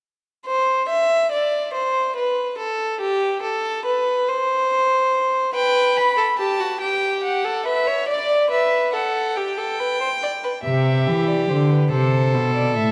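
This baroque-style fugue for string quartet has a joyful, lively character in a straight 6/8, played in period style by single bowed players with gut-string tone, set up front in a moderate concert hall. A reedy violin opens alone at 0.5 s, a nasal-edged second violin takes the melody above it from 5.5 s, and a dark cello with light vibrato brings in the bass at 10.6 s. The passage is cut from a longer piece and breaks off at 12.9 s, shortly after the cello enters.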